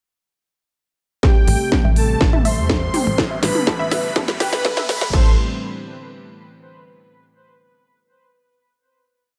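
A distorted, up-front electronic kick drives a four-on-the-floor pulse, joined by a tape-warm techno kit with a cracking snare on the backbeat, smooth programmed hats, toms and crash, all building through a drum fill in this short, dramatic and hypnotic melodic techno piece. At 1.2 seconds the layers arrive together: a bold, brassy analog synth lead with vibrato and chorus repeats a riff melody, doubled an octave higher by a soft, smooth supersaw carrying tape echo. Underneath, a lush, thick unison pad holds sustained chords, while a tight, detuned sequenced synth cycles a 12-step arpeggio loop that drifts against the bar in the background, its sound filtered through cassette tape. A punchy, dotted-rhythm sequencer bass with a moving notch enters at 1.5 seconds, and the sidechain pumping on the melodic parts and bass heightens the hypnotic push. Filter sweeps on the lead and arpeggio, plus a riser from 2.7 seconds, drive the build over Am7 and G/A before everything resolves onto a final Am7 chord at 5.1 seconds, set in light reverb and digital ambience.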